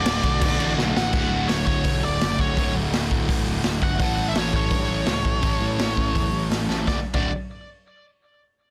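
Rebellious and energetic, this short punk rock cut from a longer piece charges along at 167 BPM in a straight 4/4, rooted in D major. A biting, overdriven lead guitar carries the melody high up with a touch of delay, while a second picked guitar and a sludgy distorted one grind out riffs beneath it, the sludgier part sitting further back. A growly, fuzzed-out picked bass adds a bright, amped edge from the background. Out front, a raw garage drum kit comes through with a boomy kick, a medium-tuned snare, hi-hat and crash, its gritty, saturated sound pumping in a small room with a rolled-off top. Drum fills at 0.8 and 6.7 seconds mark the turns as the harmony moves from D to A at 4.0 seconds and back to D at 6.9 seconds, all pressed into a dense, heavily limited modern master with light reverb.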